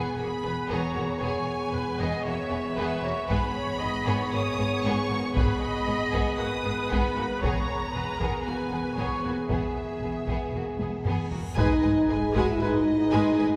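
Shadowy, distant French horn chords anchor this brooding, heroic cinematic orchestral excerpt in G# minor at 116 BPM, with lush bowed violins carrying a focused vibrato melody over a second violin line, rich violas and background cellos and double basses. Close, dry taiko drums with heavy sticks enter at 3.3 seconds. A drum fill, joined by a huge reverse cymbal and sub drop from 11.3 seconds, leads to an impact at 11.6 seconds, where soft flute-stop pipe organ chords, mellow trumpet stabs and a barely audible bright trombone section join, all set in a cavernous church reverb.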